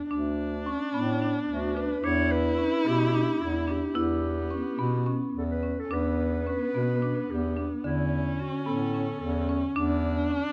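A dark, bowed viola stands up front, singing its second line with expressive vibrato and portamento in this restless, pensive chamber piece in 7/8, moving at 218 BPM in eighths in E dorian. A woody marimba with a vintage, band-limited tone spins arpeggios while the bass clarinet anchors the low end up front, and a distant, roomy clarinet carries the melody from 1.5 s to 9.6 s. The close, detailed recording has little reverb, and the passage is cut from a longer piece.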